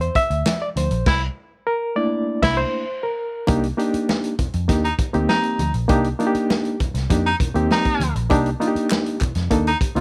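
Driving and cool, this funk excerpt opens with a barky, lightly overdriven reed electric piano soloing in stabs through a fast tremolo over C13, backed by a dark, foam-muted picked bass and a vintage drum kit with a punchy kick, snare, hi-hat and crash, while ringing congas sit in the background, a crisp group handclap pops in briefly at the start and near the end, and a clear baritone saxophone adds a second line from 1.1 seconds, joining a band accent before the harmony shifts to Cm9 at 3.5 seconds, the whole set in a small room with light reverb.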